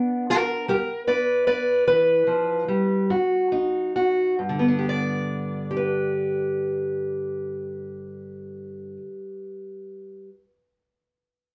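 A dark, boxy parlour-style steel-string acoustic guitar, fingerpicked and up front, carries this soulful, rollicking country blues fragment in a straight 12/8 alone, halting and slowing over its opening G chord, touching an Ab5 at 3.1 seconds, then easing back to G at 4.4 seconds for a second section, all set in a wet studio reverb that places the listener further back in the room.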